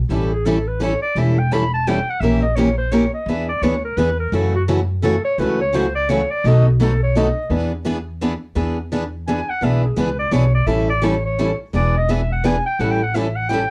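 Heard through worn, warbling old tape with a warbly pitch drift and light reverb, this lively, swinging slice of acoustic string swing in the jazz manouche style is cut from a longer piece and moves in a lilting 3/4. A clear clarinet carries the solo across the whole passage, from 0.1 to 13.7 seconds, in a jazz style with vibrato and scooped notes, sounding distant and roomy yet still sitting up front. Beneath it, a pizzicato upright bass on gut strings gives a woody, thumpy foundation. Two picked steel-string acoustic guitars provide the accompaniment: an up-front parlour guitar with fresh strings and a warm tone, and a bright, full-bodied jumbo set lower in the mix. The harmony circles through A7, A#dim7, E7, F#m7 and B7 over two statements of the same section, the second beginning at 8.6 seconds.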